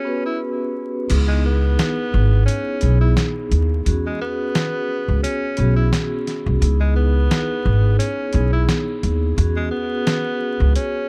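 Moody and dark, this boom-bap hip-hop excerpt in C# minor rolls at 87 BPM with a 16th-note swing, opening on a filter sweep over a rootless E6/9 chord before settling into a C#m7 to E6 alternation. A breathy tenor saxophone carries the jazz-style solo melody with vibrato and scooped notes through tape echo, while a vibraphone with medium mallets rings out metallic accompaniment with slow motor vibrato. From 1.1 seconds, a woody, thumpy pizzicato upright bass sits up front, and a gritty, compressed sampler-style kit with a fat snare, hi-hat and crash plays with its kick muted, all wrapped in small-room ambience, vinyl crackle and dark, warm production.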